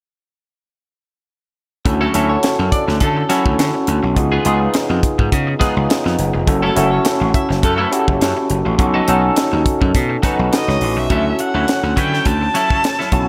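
A polished, big arena sound with moderate reverb frames this glossy, breezy 1980s jazz-funk pop excerpt in D major at 104 BPM, where a barky overdriven tine electric piano with lush chorus, a gritty slap bass and a tight funk drum kit drive the groove from 1.9 seconds, a twangy twelve-string electric guitar plays a riff, a clear horn section sits distant in the background until 7.9 seconds, and a rich, biting erhu with light vibrato and portamento takes the melody up front from 10.5 seconds.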